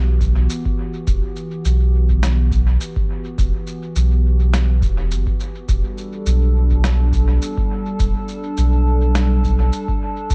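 A lightly swung 4/4 groove of deep analog kick and a muffled, pitched-down shaker and snare, the latter trailed by dub echo, enters at 0.2 seconds in this hazy, spacious ambient dub fragment cut from a longer piece. Underneath, a round, soft sub bass sits up front with tube saturation, while a warbling, detuned, lo-fi pad holds nostalgic sustained chords through chorus and its own reverb, moving from Emadd9 to a rootless Em9 at 5.7 seconds. The room sound is dry, but the mix leans heavily on echo.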